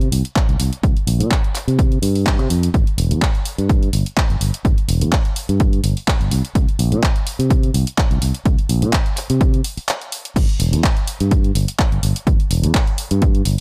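Funky and groovy, this filtered disco house cut moves at 126 BPM in 4/4 with a light swing on the sixteenths, and is tuned slightly sharp of standard pitch. A fingered electric bass, direct and amped and placed up front, carries the low end through a low-pass filter and sidechain pumping, while a punchy analog drum machine with a tape-warm tone supplies crash cymbal, handclaps and hi-hat, its hats and cymbals also pumping. An up-front electronic kick enters at 0.4 seconds, a brief break lands at 9.9 seconds, and the dry mix, cut from a longer piece, runs about 13.6 seconds.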